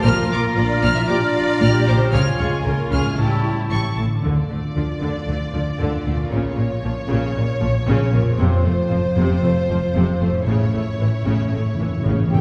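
Swashbuckling and adventurous, this heroic film-score fragment moves at 115 BPM in 4/4, opening with a bright solo oboe, a pure flute section, a mellow clarinet and a dark, distant French horn section over bowed strings before settling into D harmonic minor at 4.2 s. A focused violin section carries the melody while a second, smooth violin section and an intense viola section fill the middle, a ringing fingerpicked harp spins quiet arpeggios, and lush cellos and expressive double basses with portamento anchor the bass. Round soft-mallet timpani add a close, dry fill from 10.5 s, while a scoring-stage reverb lends the strings and winds depth.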